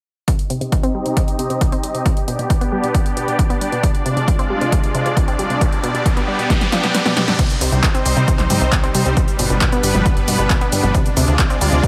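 A lightly reverberant, driving mix carries this euphoric uplifting trance excerpt at 135 BPM in C harmonic minor. A bright, detuned supersaw pad up front holds sustained chords while a lush unison pluck spins arpeggios trailed by dub echo; both pump with the sidechain, and filter sweeps run on each until 7.4 seconds. An overdriven, up-front electronic kick and a dry analog drum machine with punchy snare, handclaps, hi-hat, shaker, toms and crash cymbal drive the Cm, G and Ddim progression. A background riser enters at 4.9 seconds, a drum fill and a brief kick dropout set up the second section, and a funky, plucky sawtooth bass arrives at 7.6 seconds.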